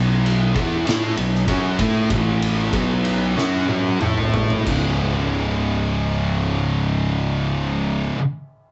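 A straight 4/4 stoner and doom metal groove, hypnotic and brooding, slows down through its opening seconds as an oversized low-tuned drum kit with a fat snare and boomy kick sits up front from 0.3 s until 4.8 s, capped by a fill that starts at 3.4 s, while two dark, thick fuzz guitars and a bright, scooped, double-tracked high-gain guitar carry the riff in the background over a growly, overdriven fingered electric bass, all heard as a rough rehearsal-room recording with small room ambience.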